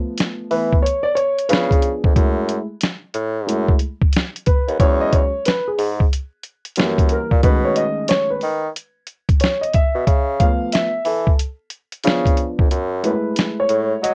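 Dry and close, this cut from a longer jazz-hop piece has the soft haze of a home cassette recording, with little reverb around the players. A dark concert grand piano opens at 0.0 seconds and carries a solo over the whole stretch, its mellow, smooth tone, deep bass and short sustain colored by tape. Sampler-style drums follow almost at once, compressed, pitched down and muffled with vintage 12-bit grit, a thumpy kick and a medium-tuned snare sitting up front beside the hi-hat in a swung 91 BPM groove in 4/4. A clear bassoon takes the bass role from 0.5 seconds, present and classical in style, with light vibrato and a soft attack. The harmony moves through altered dominants and minor ninths, from C#7alt through F#m9, E69 and B13, and the kick drops out at 12.7 seconds as F#m9 returns, leaving a cool, relaxed mood.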